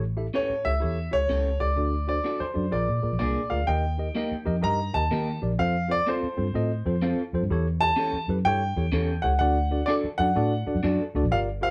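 Urgent and passionate, this swung soul passage sets an up-front, polished grand piano melody with audible action noise over a worn, slightly out-of-tune tine electric piano, while a dark, foam-muted fingered bass anchors the low end. Picked stabs from a slightly broken-up, compressed electric guitar through a small old amp enter at 0.3 s. The band sounds as if playing live together in a small room, cut from a longer piece, with the harmony moving from A7 through Bb7 and Eb before settling on D.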